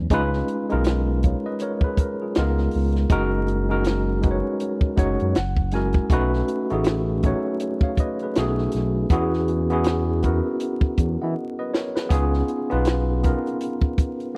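R&B with a neo-soul lean, this sensual, smooth excerpt moves at an unhurried 80 BPM in 4/4, with a swung sixteenth-note feel and tuning set slightly sharp at A4 = 441 Hz. A worn, slightly out-of-tune tine electric piano carries the accompaniment, lightly overdriven as if heard through built-in speakers, and it steps forward with a fill between 4.6 and 6.1 seconds. Beneath it, a mellow synth bass blends sawtooth and triangle tones with a touch of ring modulation, its sustained notes shaded by vibrato before it drops out at 13.3 seconds. A compact cocktail drum kit keeps time on hi-hat, tight kick and high-tuned snare, sitting slightly louder than the other parts and adding a short fill near 11.4 seconds. The harmony drifts through rich extended chords such as C#9, F#69, B13 and E69, returning to C#9 at the close. The sound is dry and close, like a 1970s studio session in a small room, with vinyl crackle lending a dusty, intimate patina.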